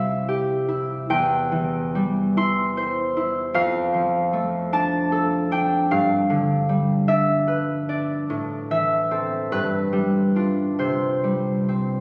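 Drenched in a lingering church reverb and captured on a phone in the room, this dreamy, graceful classical excerpt from a longer piece features a solo concert harp, fingerpicked and ringing up front across a span from E2 to C6, drifting in a rubato 6/8 at 44-52 dotted-quarter beats per minute through C major harmonies of C, Dm/F, G7 and Am before coming to rest on a bare C5 at 10.8 seconds.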